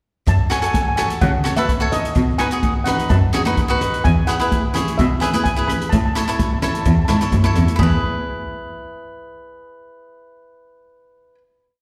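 Calypso in E major at 128 BPM, bouncy and festive, caught live through a venue's PA with light recital-hall reverb: a shimmering, mellow steel pan carries a motif-based melody in period phrases, played with soft rubber sticks, while an up-front cavaquinho picks crisp triad chords and a bowed, close cello with vibrato holds down a two-feel root-and-fifth bass. An airy open jazz drum kit with a boomy kick drives a calypso groove on hi-hat, kick and rim click, and ringing, high-tuned congas add a loose pattern, with slapback echo on the pan, cavaquinho and congas. The verse moves through F#m, B7, Eadd9 and A before cello and drums stop at 7.9 seconds and the congas just after, leaving pan and cavaquinho to hold the final E chord until 11.4 seconds.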